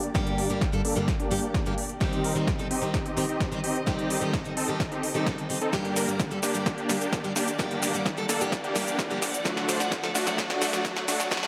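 A moderate digital room reverb wraps this short, euphoric cut of festival progressive house, a build-up at 129 BPM in 4/4 and G harmonic minor, with its chords moving from Gm to Cm, back to Gm and then to D. Huge, detuned supersaw chords carry the riff with sidechain pumping, delay and a filter sweep, while a symphonic string section sits in the background with soft-attack, bowed vibrato sustaining chords under its own pumping and filter sweep. A picked, plugged-in steel-string acoustic guitar enters at 0.1 s with concert polish, finger squeak and delay, pumping along with the synths. The punchy, overdriven electronic kick arrives at the same moment, and an up-front big-room kit of crisp hats, shaker and snare runs a drum fill through the whole passage. A very quiet electronic riser creeps in at 1.9 s, adding to the anthemic lift.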